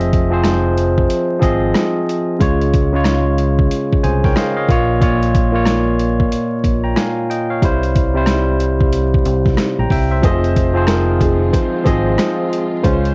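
A dusty home cassette recording with vinyl crackle, a dull top end and a dry, close room sets the tone for this reflective, moody boom-bap hip-hop excerpt, cut from a longer piece. A gritty, compressed sampler-style drum kit sits up front with a thumpy kick, medium-tuned snare, rim clicks and swung hi-hats, carrying the tape grain of a large-room re-recording. Beneath it, a deep, round, punchy fingered electric bass with tube saturation holds down the low end, while a bright, barky tine electric piano plays the chords up front, moving from Fm7 through Db, Bbm and C. At 10.2 seconds the music turns to a second section, where a dark, woody upright piano enters with a worn, slightly detuned, boxy melody, its action noise audible. Lush bowed strings with vibrato and portamento add sustained chords in the background, and soft, dry finger snaps join at 10.9 seconds.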